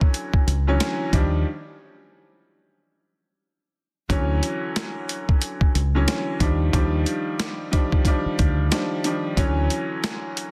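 A swung 91 BPM boom-bap hip-hop groove in 4/4, cut from a longer piece, sets gritty, pitched-down sampler drums with a thumpy kick and high-tuned snare alongside a round, punchy dub-style fingered electric bass and a woody, slightly detuned upright piano filtered through cassette-tape colour, moving between Dmaj9 and Ebmaj9 chords for a soulful mood, with a break from 1.5 to 4.1 seconds and a dense, dry, heavily limited master.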